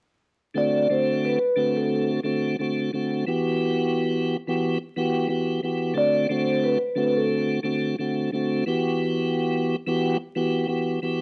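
A piping, scooped tonewheel organ opens this dark, reflective hip hop excerpt at 89 BPM. It sits up front through a slow rotary speaker with a cassette-tape tint, comping over D7 and Em(add9) chords in a gently swung 4/4. From 0.6 s, a mellow, ringing vibraphone played with soft mallets carries the melody with slow motor vibrato until 7.5 s, and the organ continues alone to 11.2 s, all set in a moderate studio reverb with a dark, warm production edged by vinyl crackle.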